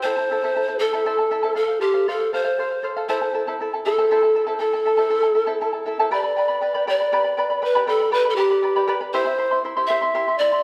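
A steady 6/8 pulse at 79 BPM, counted in dotted quarters, carries this wistful yet festive Andean folk fragment, cut from a longer piece and moving from A minor through F to G and C. An airy, woody pan flute with a crisp chiff and a slightly unsteady vibrato sings the melody over the whole 10.6 seconds, while a bright, shimmering fingerpicked charango, its doubled strings partly in octaves, accompanies just beneath it. Both sit up front in the moderate reverberant bloom of a recital hall, with the phrase shifting to a new section at 6.1 seconds.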